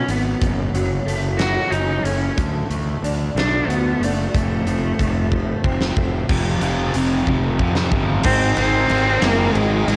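Dark and brooding, this quiet-loud alternative rock fragment in 6/8 sets a distant, smooth bowed cello melody over picked, slightly broken-up arpeggios from an electric guitar through a small old amp. Beneath them sit a growly, overdriven fingered bass and a huge arena drum kit with punchy kick, fat snare and bright cymbals up front in a pumping hall. At 6.3 seconds the arpeggios give way to a double-tracked, distorted fuzz guitar riff, with drum fills around 5.3 and 7.3 seconds, while cassette tape colours the cello, guitars and drums within a small-room home recording.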